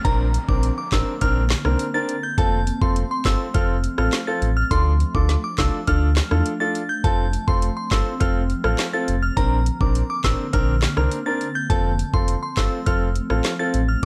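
Dancehall with a summery, sunny mood and a straight 4/4 feel, built on a deep, sine-toned sub bass with octave that sits up front alongside an electronic drum kit with a knocking kick, woody snare, metallic hats, handclaps and rim clicks. A crystalline FM bell carries the melody high above, dressed in chorus and tremolo, while a polished baby grand piano and a dark, ethereal FM pad with phaser and ensemble chorus pump against the beat over chords moving from Bbadd9 through F and Dm. A very quiet downlifter falls away in the first 2.4 seconds, and the whole excerpt has a dry, gritty cassette-tape character in a digital ambience.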